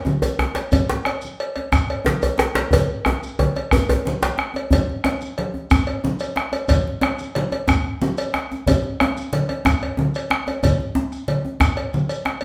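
Festive and driving, this West African drum ensemble piece in 12/8 at 121 BPM gradually speeds up as an up-front bombo sounds round, a deep djembe with metal rattles plays throughout, a tight, cracking second djembe stands forward until 4.4 seconds, damped thick-skinned congas sound compressed and saturated, a metallic cowbell adds its compressed, saturated tone, and a grainy, mellow, distant shekere hangs back, with a drum fill from 2.7 seconds leading into a new section at 4.7 seconds, all captured live in one room with a lush large-studio reverb.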